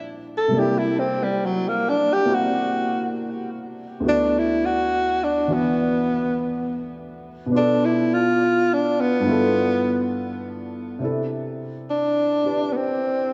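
A woody upright piano opens this late-night jazz ballad, laying down a lush Bb69 chord with a subtle chorus shimmer before a breathy tenor saxophone enters at 0.4 seconds. Set up front, the saxophone carries the melody as a mellow, tender solo through 11.0 seconds, with vibrato, soft subtone, scooped notes and a smooth top, its lines trailed by tape echo. The slow swung pulse drifts through rich harmonies, moving from C9 and D69 to Bm7b5 and G13 before settling on C69 when a new section arrives at 11.0 seconds. The piano stays close and intimate beneath the horn in a supporting role. A plate reverb soaks the dreamy mix, and the top end is rolled off to a soft, dusky glow. The recording is cut from a longer piece.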